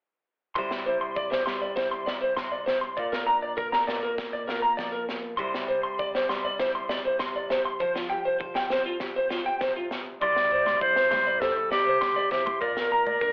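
Highlife guitar band music in C mixolydian, danceable and carefree, moving at 100 BPM in a straight 4/4. From 0.6 seconds a fingerpicked nylon-string guitar with audible finger squeak lays down a full-bodied accompaniment in plate reverb. Above it, a twangy, slightly broken-up electric guitar through a small old amp plays picked arpeggios up front, carrying slapback echo and plate reverb. A crunchy breakbeat kit, saturated and gritty with a tight kick, a high-tuned snare and a rolled-off top, drives the groove beneath chords moving among Cadd9, Bb and Fsus2. At 10.2 seconds a clear clarinet takes a jazz-style solo melody up front with light vibrato and a soft attack, joined by a woody pizzicato upright bass in the background, while close, dry congas struck with hard hands enter shortly after. The whole mix is heard through a telephone-like filter in a moderate studio room, and this fragment is cut from a longer piece.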